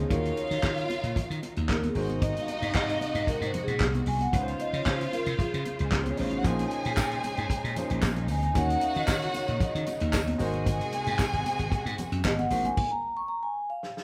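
A straight 4/4 disco groove at 114 BPM drives this sultry, glamorous excerpt, anchored by a dry, mid-forward soul drum kit with a tight kick, medium-tuned snare, hi-hat, handclaps and crash cymbal, sitting up front beside a bright, punchy slap bass. Over it a mellow vibraphone played with soft mallets and its motor off takes the solo lead, its metallic, ringing tone moving through Ebm7, Ab7, Dbmaj7 and Bbm11. A clear concert grand piano with deep bass supplies accompaniment, while a lush, distant violin section adds an expressive second line and a focused string section holds sustained chords in the background. High-tuned congas struck with hard hands sit close and dry in the background, joined at 6.4 seconds by a jingly tambourine, and the whole band plays together in a moderate, large studio room. Most of the band stops around 12.8 seconds, leaving the vibraphone and drums until a drum fill at 13.8 seconds.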